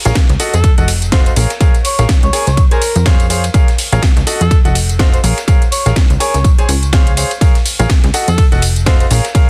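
A dense, heavily limited mix opens this energetic, soulful piano house excerpt at 124 BPM in Bb minor, where a clear baby grand piano with audible action noise plays a tape-echoed, sidechain-pumped riff over a punchy, plucky analog bass, an up-front electronic kick, a house kit with cracking snare and metallic hats, a gritty sampler-style breakbeat kit in the background, and a smooth alto saxophone melody with light vibrato entering at 0.5 seconds, all moving through F7b9, Bbm7 and Dbmaj7 chords with a swung sixteenth-note feel.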